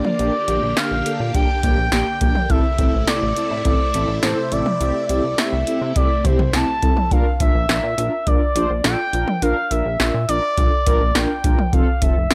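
Synth-pop at 104 BPM in a melancholic, cool mood, this dry, gritty fragment sets a smooth, gliding portamento lead with vibrato over round, full-bodied synth brass, a swirling phased string machine that drops out at 7.1 seconds, a glossy chorused bass entering at 0.2 seconds, and an up-front analog drum machine with a deep kick, punchy snare and metallic hats, moving through Gm/Bb, Am and C6 before settling on Bb and F.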